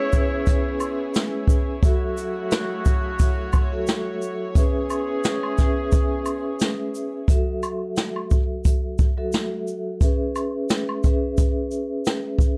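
A dry, close-sounding mix sets a moody, gritty boom-bap hip-hop groove at 88 BPM in F# minor, swung lightly on the sixteenths. A dark, woody violin section is heard only briefly at the opening, while a ringing, cassette-tinged vibraphone with soft mallets carries accompaniment throughout, backed by reedy, gut-toned sustained string chords and tight, vintage horn stabs that both drop out by 7.3 seconds. Up front, a boomy jazz brush kit with hi-hat, kick, shaker and snare drives the beat alongside tube shaker and woodblock percussion, over chords moving between C#m7 and F#m7.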